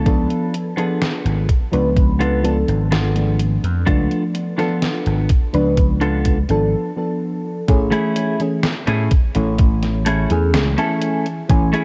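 A dark, clean picked electric guitar riff, bathed in lush chorus and analog delay, opens this faded, nostalgic vaporwave excerpt alongside a punchy, amped vintage slap bass, while a soft, round FM electric piano with a noise layer and the same chorus and delay fills in the harmony. A thumpy, tape-warm electronic kick sits up front beneath a detuned 8-bit drum machine whose medium-tuned snare and hi-hat carry small room ambience and gated reverb, all in a straight, unhurried groove. A brief break at 6.7 seconds gives way at 7.7 seconds to a move from a tense C#7b9b13 chord onto a dreamy Amaj7, with light digital reverb lending the whole mix a hazy sheen.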